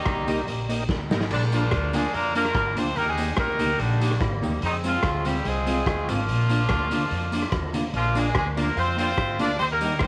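A clear, tight horn section opens this joyful, upbeat ska excerpt at 145 BPM with octave-doubled vintage melody lines, joined by a woody pizzicato upright bass, a saturated, punchy garage drum kit that plays a fill from 0.9 to 1.3 seconds, clean fingered electric guitar, a very quiet jingly tambourine, and a gritty overdriven organ with slow rotary speaker and chorus vibrato that stabs in the background from 0.3 to 1.3 seconds and returns at 8.2 seconds, all moving through Eb, Bb and Fm in a small room under vinyl crackle.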